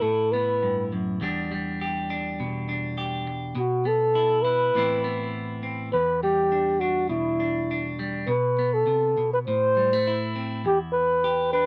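Warm and danceable, this short highlife excerpt moves at 102 BPM in 4/4 with a light sixteenth-note swing, set in E minor. A breathy flugelhorn carries the melody from the first second to the end at 11.7 seconds, its dark, whispered tone marked by vibrato, a soft attack and a smooth top, played up front in an intimate jazz-style solo between E4 and C5. Beneath it, a clean electric guitar plays accompaniment throughout, picked and twangy with a bright edge, ranging from E2 to G4 and sitting up front as well. The harmony drifts through suspended and added-note colours, moving from Asus2 to Em7, touching Bsus4 and Amadd9, and settling back on Em7 near the close. The sound is dry and close, in the manner of a 1970s studio, with light reverb adding a little air.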